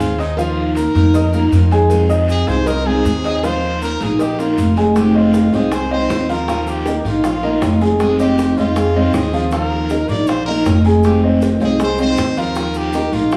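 A bright trumpet with vibrato carries the solo melody over a danceable Cuban son and guajira groove, cut from a longer piece and played live by a band in one room. Up front, a woody, growly pizzicato upright bass anchors the band, while a worn baby grand piano spins long-sustaining arpeggios and a picked steel-string acoustic guitar with audible finger squeak adds accompaniment over a vamp alternating Ebsus2 and Fm7. In the background sit a raspy guiro, grainy maracas, and tight, high-tuned cowbell and bongos struck with hard hands that enter at 0.2 seconds, with the whole mix bathed in a wet large studio reverb.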